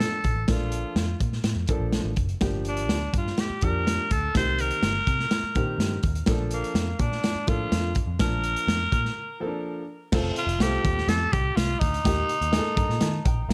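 From the first beat, a raspy, up-front tenor saxophone with tape echo carries the melody of this driving, passionate 1960s-style soul excerpt over a woody upright piano with audible action noise, a round, foam-muted picked electric bass and a saturated, gritty breakbeat drum kit with dark cymbals and a tight kick, reaching a break at 9.2 seconds before the piano adds a fill at 12.5 seconds.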